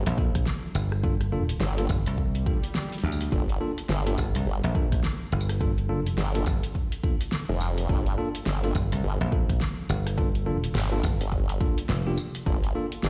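Swaggering and gritty, this glitch hop excerpt moves at 105 BPM in 4/4 with a 16th-note swing, sitting in G minor on a single Gm9 chord throughout its 13.1 seconds. Two basses sit up front: a formant-sweep wobble bass built from detuned sawtooth and sine tones, compressed and thickened with chorus, and a dry thumbed slap bass that sounds bright, direct and foam-muted. A punchy, tape-toned electronic kick drum anchors a layered pop kit of fat snare, metallic hi-hats, rim click and tambourine. A clean tine electric piano plays stabs through vintage 12-bit sampler grit, sidechain pumping and dub echo, as if heard through built-in speakers. A brief electronic swell sounds in the background from 2.4 to 3.3 seconds. The mix carries a light reverb, like a big sound system heard in a bare room with a large studio tail.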